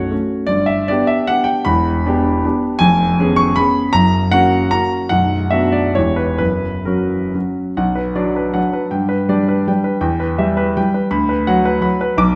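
A smooth, vintage-toned grand piano sits up front and plays alone from the opening, tracing a nostalgic yet capricious romantic dance in 3/4 with dotted rhythms and free rubato, its tempo drifting between 120 and 177 BPM. In B minor, the harmony moves through G, Em7 and C#7/E# toward F# before settling on Bm, and a new passage begins at 7.8 s, returning through G and Em to close on Bm/D at 12.4 s. The instrument spans B0 to D6 inside a wet recital hall reverb, and this short fragment is cut from a longer piece.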